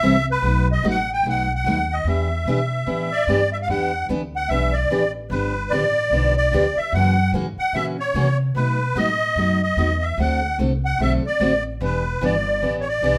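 A swung 4/4 pulse drives this short cut of fiery, bittersweet acoustic string swing, with a picked steel-string acoustic guitar supplying the accompaniment and a woody, thumpy pizzicato upright bass on gut strings sitting up front. A reedy musette accordion, its wet tuning giving a shimmering edge, carries the melody up front, moving from a B7 to Em7 opening into a new passage at 3.7 s that passes through G7, F#7 and D7 before settling on Em7. The trio plays live together in one room, wrapped in a moderate studio reverb.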